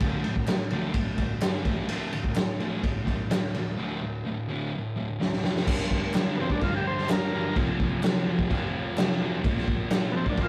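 A rough rehearsal-room recording with moderate small-room ambience gives this gritty, swaggering garage rock excerpt a close, unpolished feel. At 127 BPM in a straight 4/4 and in D minor, a thick fuzz guitar, electric, dark and double-tracked, sits up front with a picked, distorted riff ranging from D2 to Bb3 over power chords on D, G, A and later F and Bb. The raw garage drum kit is also up front, saturated and rolled-off on top, with a fat snare, punchy kick, crash and ride cymbals, and a drum fill at 5.2 seconds leads into the second section at 5.7 seconds over a G minor chord. Hollow group handclaps stay close and dry in the background. At 6.4 seconds a vintage overdriven combo organ enters with a buzzy melody between B3 and C5, colored by light vibrato.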